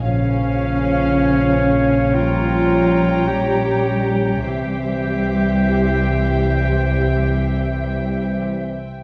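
A dark, reverberant scoring-stage sound opens this brief, roughly nine-second fragment of a slow romantic orchestral movement, its melancholic, elegiac mood unfolding in 4/4 at around 50-58 BPM with a flexible, rubato feel. Muted violins carry the veiled, softly attacked melody from a distance, while a second violin line sits lush and in the background. A bright, vintage-toned clarinet, a clear oboe with a smooth top and a pure silver flute weave second lines around them, the clarinet and flute tucked further back. Muted violas supply accompaniment, a dark, roomy French horn section holds sustained chords, and muted cellos and double basses anchor the bass, the basses sitting up front. The harmony moves from Bbm through Gdim/Bb to C, leaving the passage suspended in a mournful, shadowed color.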